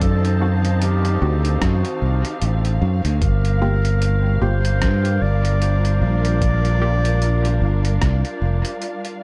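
A growly, bright fingered electric bass sits up front in this deep, meditative ambient dub fragment. It plays alongside a muffled, thumpy electronic kick and a pitched-down lo-fi sampler-style kit of hi-hat and rim click, both overdriven and swung on the 16ths, with the kit also carrying dub echo. A veiled, con sordino studio string section holds bowed chords with vibrato, shifting from D7b9 to Gm7 at 3.2 seconds, while a solo clarinet in classical style plays a warm melody through dub echo, and in the background a mellow, detuned, filter-plucked sawtooth chord stab runs through phaser and dub echo from 0.4 to 7.0 seconds, within a dark digital ambience.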